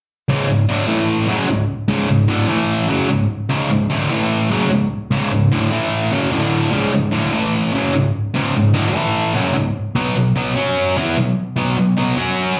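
A sludgy, distorted electric guitar plays alone from 0.3 s, grinding out a heavy, driving rock riff at 149 BPM in a straight 4/4. The picked, double-tracked guitar sits up front with overdrive and a slapback echo, ranging from C#2 to F#4 over power-chord shapes that move mostly between C#5 and A5 before shifting to B5 and F#5 near the close at 12.6 s. The sound comes from a live gig heard through the venue's PA, with a moderate club reverb around the guitar, and the clip is cut from a longer piece.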